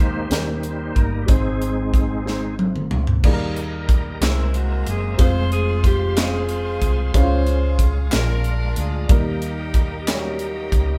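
A reedy, bright tonewheel organ opens this uplifting, reverent slow gospel excerpt in 6/8, taking a solo turn through its slow rotary speaker and chorus vibrato, with audible key click, while holding sustained chords. Beneath it, a woody upright piano supplies accompaniment and a dark, round hollow-body short-scale electric bass sits punchy and up front. The crisp fusion drum kit, with its high-tuned snare and punchy kick, plays a fill from 2.3 s that leads into the next section at 3.2 s. At 4.2 s an edgy, close-miked saxophone section enters with the melody, singing with vibrato in a pop style, as a very quiet, hollow group handclap joins close and dry. The whole band sounds as though it is playing live together in a stone room with a moderate reverb.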